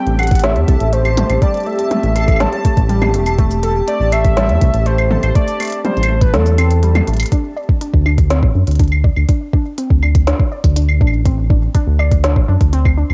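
A straight 4/4 pulse at 122 BPM drives this cerebral, intricate IDM fragment, cut from a longer piece, with an overdriven soft electronic kick and an organic electronic kit of woody snare, crisp hats, cabasa, claves and toms, while a round, deep analog bass with tube saturation sits up front over Am7. A velvety synth lead with vibrato carries the melody, framed by a glassy, ethereal FM pad, a warbling, nasal lo-fi pluck playing arpeggios through tape echo, and a pulsing gated texture pumping in the background. The kick drops out at 6.3 seconds and a drum fill at 7.1 seconds leads into a sparser passage on D5, where the lead, pad and texture fall away, leaving the pluck, bass and drums in light digital ambience with a dusty cassette character.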